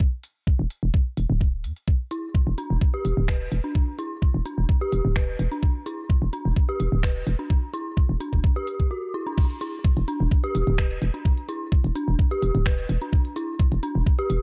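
A straight 4/4 pulse at 128 BPM drives this quirky, sparse minimal techno excerpt in E minor, built on an up-front, layered electronic kick with a knocking, tape-warm punch. A minimal click drum kit sits far back in the mix, its clicky hats, finger snaps and crash cymbal re-recorded in a small room. A hollow, bouncy FM bass with a fast attack and quick decay pumps against the kick, staying low and punchy near the front. From 2.1 seconds an eerie, detuned synth bell adds an inharmonic, mellow riff, its long release smeared by chorus and delay and pulsing with sidechain pumping. A brief break at 8.9 seconds gives way to a drop at 9.4 seconds, all set in digital ambience with a dark, warm production.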